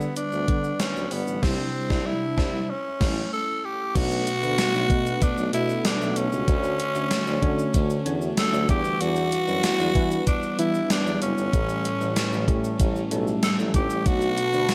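A growling tenor saxophone carries the melody up front, its raspy, gritty tone touched with light vibrato and a trail of delay, in this glossy, nostalgic slice of 1980s-style pop cut from a longer piece. Beneath it, a bell-like tine electric piano shimmers through a phaser, while a clear, punchy tuba with vintage vibrato supplies the bass line, and a grainy tube shaker sits very quietly in the background. The gated 80s digital drum machine enters at 0.2 seconds with a thumpy kick, a gated reverb snare, hi-hat, crash and tambourine, sounding tape-warm and placed up front. The band hits a shared accent from 1.4 to 4.0 seconds over a turn from Cadd9 to A, and then a dark, overdriven electric guitar slips in very quietly at 3.9 seconds. From there the harmony settles into a smooth progression of Bm7, Dmaj7, Em7 and A7, all under a light reverb that gives the mix a polished sheen.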